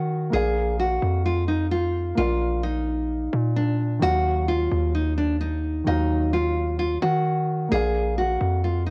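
An up-front, fingerpicked nylon-string guitar carries the melody in this cut from a longer trap-leaning hip hop piece. Its full-bodied classical tone is softened by a low-pass filter and trailed by analog delay. The track moves at 130 BPM in 4/4 with a half-time feel, set in Eb harmonic minor, and its mood is melancholic and menacing. Lower in the mix, a dark baby grand piano supplies mellow, intimate accompaniment with audible action noise and a short sustain, also passed through a low-pass filter. A hard-hitting 808-style bass sits up front as well, punchy and heavy, with a sine body, a noise layer, a fast attack and a decaying tail. The harmony shifts from Bb to Ebmadd9 at 4.0 seconds and returns to Bb at 7.7 seconds, captured as a dry, gritty hardware recording in a small room.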